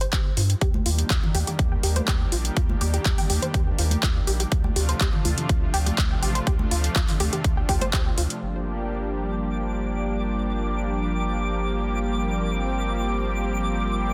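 A driving pulse at 123 BPM in straight 4/4 anchors this expansive progressive house excerpt in G minor, with a punchy, overdriven electronic kick up front and a layered deep house kit adding handclaps and metallic hi-hats, while congas sit in the background in a small room. A round, nasal analog bass pumps beneath from the start, dark and deep, holding through to the close at 14.1 seconds. A tight sequenced sawtooth synth spins detuned, filter-plucked arpeggios coloured by chorus, phaser, delay and sidechain pumping, with a filter sweep running across its sound until the arpeggio stops at 8.2 seconds and the drums fall away by 8.4 seconds. A lush, thick unison pad enters at 0.6 seconds, warbling and vintage in character, carrying sustained chords that move from Ebmaj7 to Dm7 and then settle on Gm7. In the closing stretch a twinkling granular texture with an octave-up shimmer floats high above the pad and bass, all set in light digital ambience within a dense, heavily limited modern master.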